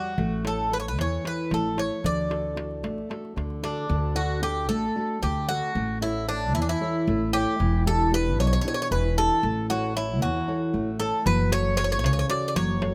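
Greek folk in a straight 7/8 at 228 BPM, relaxed and hopeful, set in D major and gradually speeding up. A picked bouzouki carries the melody up front with metallic, partly octave-doubled double strings, over dark fingerpicked nylon-string guitar and a woody pizzicato upright bass, while a crisp metal-shelled darbuka played with hard hands sounds from 0.2 to 3.8 seconds and returns at 11.3 seconds. Light reverb surrounds the band as the chords move from A and D through Em7 to F#m.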